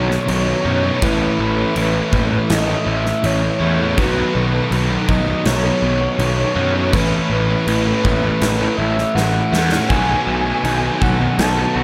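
A straight 4/4 pulse at 81 BPM drives this wistful, dreamy shoegaze and dream pop excerpt in A lydian. A gated 80s kit with a punchy kick, medium-tuned snare and bright crash plays in a bright stone room and takes a fill from 9.2 to 9.9 seconds, while an up-front, growly fuzz bass anchors the low end beneath three background guitar riffs: a crunchy overdriven part with reverse reverb, a bright double-tracked distorted part, and a thick fuzz part with subtle chorus. Over the B7 and Aadd9 changes, a breathy, flute-like synth lead carries the melody with soft attack, vibrato, chorus and analog delay, a very quiet, twangy twelve-string guitar adds clean arpeggios from 9.9 seconds, and the whole mix is soaked in plate reverb.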